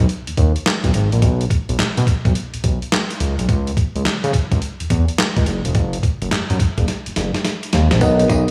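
A light reverb gives this flirty, upbeat new jack swing excerpt a studio sheen, as a gritty, pitched-down boom bap drum kit with a thumpy kick, handclaps, hi-hat and tambourine drives a swung 106 BPM groove beside a smooth, sawtooth-edged synth bass touched with ring modulation and vibrato. The harmony moves to C#m at 3.2 seconds and falls back to an unharmonized stretch at 5.8 seconds, ahead of a drum fill at 6.9 seconds. At 8.0 seconds a mellow FM electric piano with phaser and a clean, direct-recorded electric guitar riff with lush chorus and slapback echo appear just as the clip ends.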